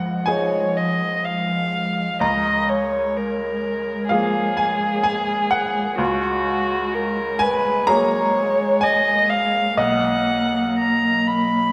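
Rubato and unhurried in 4/4, this hopeful, intimate neoclassical piece for piano and strings sets a veiled violin melody with vibrato and portamento, entering at 0.3 seconds, over a brilliant upright piano with woody action noise and a slight detune, a dark con sordino cello second line, and a hollow, flute-like pad with ensemble chorus sitting softly in the background, the ensemble heard within a reverberant concert-hall space.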